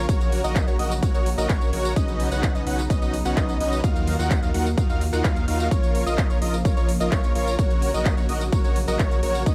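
A straight 4/4 pulse drives this emotional, powerful festival progressive house excerpt, with an overdriven, punchy electronic kick sitting up front from 0.1 seconds and a layered big-room kit adding handclaps, crisp hi-hats, ride cymbal and tambourine, also overdriven. Underneath, a saturated sine sub bass holds the low end with a deep, sustained tone, pumping against the kick like the other melodic parts. A huge, dense compressed supersaw plays the riff, its detuned sawtooth layers thickened by a sub octave, vibrato and dub echo. Above it, a bold, nasal unison lead plays arpeggios with warbling vintage 12-bit sampler grit and its own dub echo, while a lush, airy pad sustains chords in the background through chorus and phaser, softened by a slow attack. A very quiet electronic swell sounds briefly between 3.3 and 3.8 seconds, and the harmony cycles through Gb/Bb, Badd9, Ebmadd9 and Bbm under light reverb.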